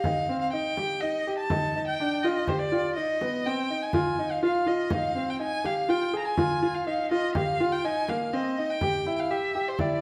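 Contemporary chamber music in 5/4 at 123 BPM, hopeful and shimmering, with a single bowed violin carrying the melody in a rich, focused voice with vibrato while a brilliant, open grand piano spins arpeggios with long sustain beneath it. A close, dry frame drum adds acoustic percussion, and the violin and piano sit in a recital hall whose reverb lends the sound a lingering bloom. The harmony moves from a rootless C minor to Ab5 at 3.9 seconds and E minor at 8.8 seconds, in this short passage cut from a longer piece.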